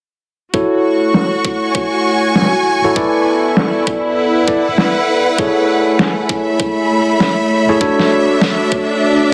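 A warbling, nostalgic lo-fi pad, bell-like tine electric piano stabs and a rich, bowed studio string section with vibrato, all pumping to the sidechain, arrive together with a knocking, up-front electronic kick at 0.5 s over F#m7, E7sus4, Amaj7 and Dmaj7. A gritty, overdriven, pitched-down snare joins at 1.1 s, while a filter sweep runs across the drums and delay trails the piano. This funky, swaggering glitch hop passage, cut from a longer piece, swings its sixteenths and sits in plate reverb under a dense, heavily limited modern master.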